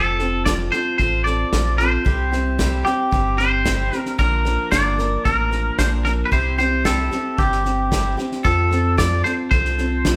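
A moderate stone-room reverb surrounds this short cut from a longer piece, with the band playing live together in one room. It is an easygoing, nostalgic honky-tonk and classic country tune in F major at 113 BPM, in a straight 4/4. A bright, clean, compressed electric guitar with plenty of twang carries the melody up front, while a full-bodied dreadnought acoustic with fresh strings supplies picked accompaniment underneath. The bass is an unusual touch: a rubbery, hollow, nasal square-wave tone with a filter pluck, a moving notch and a dark, sustained bounce. A natural acoustic drum kit with a punchy kick, medium-tuned snare and hi-hat joins at 0.2 s, sounding like a small room. The chords move from F through C and Bb, return to C, and land back on F at 8.5 s.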